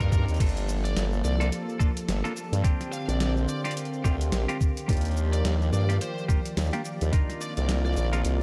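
Lightly reverberant and gritty, this short cut from a longer glitch hop piece struts at 107 BPM in G minor with a swung 16th-note feel, its mood playful and swaggering over rich chords from Gm9 through Bb69 and Ebmaj9 to Cm11. Up front, a thumpy, pitched-down electronic kick and a wobbling, formant-filtered sawtooth-and-sine bass with chorus anchor a compressed, tape-toned boom bap kit of medium-tuned snare, hi-hat, shaker and crash cymbal. A bright, overdriven lead guitar carries the melody through delay and 12-bit sampler crunch while a clean, hollow-body electric guitar plays pumping stabs, a smooth, detuned analog pad enters at 0.4 seconds with sustained chords, and a nostalgic, lo-fi, warbling tape-like pad drifts mellow in the background.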